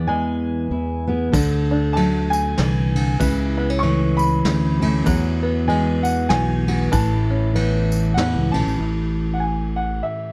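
A pastoral acoustic folk passage in a lilting, swung three, opening with a bright upright piano melody bathed in plate reverb, a full-bodied fingerpicked dreadnought guitar, plunky open-back banjo arpeggios and a round, up-front electric bass. At 1.3 s a soft brush kit with dark cymbals and a punchy kick joins a jingly, close tambourine set low in the mix, and both stop at 8.7 s, just before the harmony settles on A5. The production is dark and warm with light reverb, in a short passage cut from a longer piece.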